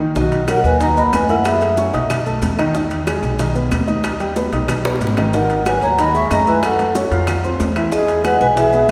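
Danceable, sunny Afro-Cuban jazz in which metallic, motor-off vibraphone carries the melody alongside a breathy, straight-toned silver flute, both dropping out after 1.8 seconds and returning at 5.3 seconds after a drum fill, over dark grand piano chords, woody pizzicato upright bass, a background bed of round low-tuned bongos, medium-tuned congas and woody claves, plus ringing metal-shell timbales and grainy vintage maracas, all bathed in a long church reverb.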